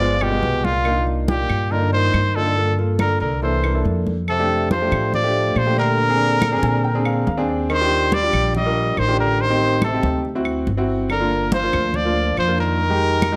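Sophisticated and fiery, this 141 BPM Afro-Cuban jazz excerpt in C minor features a bright, vibrato-rich trumpet up front with a slapback echo, joined in the background by a breathy subtone tenor saxophone with scooped notes, over an intimate concert grand piano with audible action noise that adds a fill at 6.4 seconds, a woody pizzicato upright bass, damped thick-skinned congas, and dry claves entering at 0.2 seconds, captured by close, detailed microphones with light reverb.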